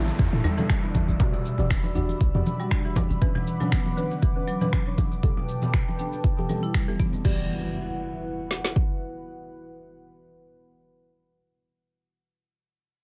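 This earthy, driving afro house cut moves at 119 BPM in E dorian with a light swing on the sixteenths, opening on Asus4 and settling on Em7. A dark analog pad of detuned sawtooth with a sub octave holds sustained chords, while a deep, mellow chord stab with a wave-folded, phased tone pulses beneath it, both breathing with sidechain pumping. Bright, woody marimba arpeggios struck with hard mallets sound close and dry, and both marimba and stab pass through filter sweeps until 7.2 s, when a downlifter and impact mark the shift to the closing section. A boomy 808-style bass anchors the low end until 3.2 s. The overdriven electronic drum kit sits up front with a deep kick and woody snare running until 8.9 s, joined by cabasa, crash cymbal and finger snaps, distant congas in a large room, and a close, hard-hand djembe near the start, all in a mostly dry mix.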